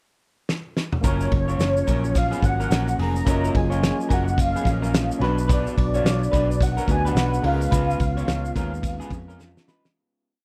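A soft, octave-layered synth lead carries a motif-based melody with phaser and ensemble chorus over a dreamy, hazy indie bedroom-pop groove at 108 BPM in F# major, where a loose drum kit opens with a fill at 0.5 seconds, a round, foam-muted bass plays a melodic line up front, a barky overdriven tine electric piano holds chords, two small-amp electric guitars add dark strummed barre chords and a twangy ringing figure doubled in sixths, and a grainy tube shaker ticks sixteenths before the whole piece fades out from 7.7 seconds.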